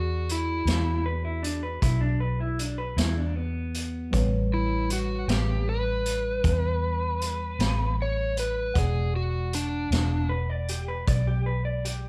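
Swaggering and soulful, this slow blues in 12/8 is caught as a short excerpt from a longer performance, with the band playing live together in one room under light reverb. An overdriven slide guitar carries the melody up front with a warm, fingered tone, falling away at 10.3 seconds while the rest of the group plays on. Underneath, a vintage muted bass sits forward with a dark, round, foam-muted sound, and a vintage acoustic drum kit enters at 0.3 seconds with a punchy kick, medium-tuned snare and hi-hat, its top end rolled off. A second electric guitar joins at 1.1 seconds, picked through a small old amp that gives it a slightly broken-up, lo-fi, compressed edge. A mellow, clean tine electric piano heard through its built-in speakers stays in the background, filling out the harmony as the progression moves from E7 to A7 and back to E7.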